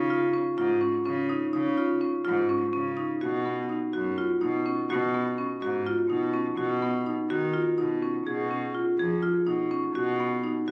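Contemporary chamber music in a playful, hopeful 7/8 at 250 BPM in eighths and B lydian, this fragment of a longer piece pairs an up-front, bowed solo cello with a rich, reedy gut-string period tone carrying the bass line against a bright, woody rosewood marimba played with medium hard mallets in up-front arpeggios, the music moving into a new section at 3.2 seconds, all captured on a phone in a room with light club reverb and compression.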